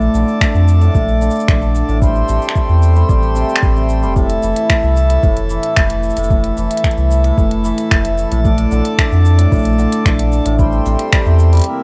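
A light reverb gives this short excerpt of pastoral folktronica a gentle sense of space, with a ringing, hammered cimbalom and a round, sine-like sub bass sitting up front. The cimbalom plays low arpeggios through a digital delay, while a reedy, breathing pedal harmonium sustains chords further back. An organic electronic kit of cabasa, finger snaps and smooth hi-hat carries an overdriven grit and a small-room character, and an overdriven soft electronic kick joins at 0.4 seconds. The deep bass has a fast attack and held notes that anchor the harmony as it moves through Bbmaj7, Am7 and Fmaj7 before returning to Bbmaj7 and Am7. The mood stays warm and pastoral in a straight four-beat groove until a break arrives at 11.7 seconds.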